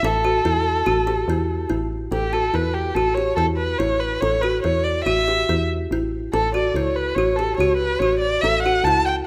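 A dark, close solo violin carries the melody up front, its bowed line shaded with vibrato and portamento for an expressive, soft-attacked voice. Beneath it a kalimba plays bright, hollow-boxed arpeggios with a short thumbnail pluck, while a round, woody FM bass holds the low end with fast-attack, decaying notes. This contemporary chamber piece moves in an uneven 5/4 meter with a straight feel, and its mood is shimmering yet restless. A new section begins at 2.1 s, and the harmony moves from A5 to F#m/A at 6.3 s. All three instruments sound together throughout this short cut from a longer work, set in a moderate recital hall reverb.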